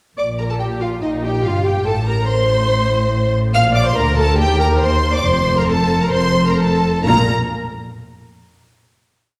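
A full string orchestra enters together at 0.2 s in this graceful and spirited classical-period piece. The first violins carry the melody with vibrato and expressive portamento, the lush second violins double the tune at the octave and in unison, and the dark, woody violas, softly attacked, double it at the octave as well. Beneath them the rich cellos hold a sustained bass with passing notes, the smooth, even double basses double that line, and a wet scoring-stage reverb places the ensemble further back in the room before a final note rings from 7.1 s.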